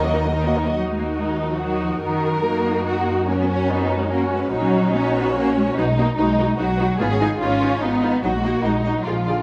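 A quick, straight 3/4 pulse at 145 BPM drives this stormy, dramatic classical-period movement for string orchestra in Eb minor, where a focused violin section carries the melody in the background beneath a soft-attacked, up-front second violin line, distant violas supply lush accompaniment, and expressive cellos share the bass with a rich, bowed double bass section, all set in a moderate scoring-stage reverb as the harmony moves from Ebm through Gb and B to Fm7b5/Ab before settling on Ebm/Bb.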